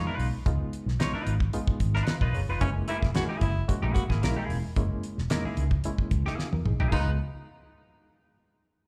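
This short excerpt sounds like a live club gig heard through the venue's PA, with small-room ambience and club reverb around the band. It is a playful, energetic funk groove at 111 BPM in 4/4 with a straight feel, moving from Db9 to Gb9 and back to Db9. A damped 70s drum kit sits up front, dry and polished, with a fat snare and tight kick, while a dark, foam-muted fingered bass gives round, punchy low end. A clean, compressed semi-hollow guitar with lush chorus and slapback echo plays accompaniment, and a barky, reedy electric piano adds bright stabs with light overdrive, medium tremolo and slapback echo. At 2.6 seconds a baritone saxophone enters on a smooth-topped second line with vibrato and slapback echo, and a drum fill at 6.4 seconds leads into a new section at 6.9 seconds.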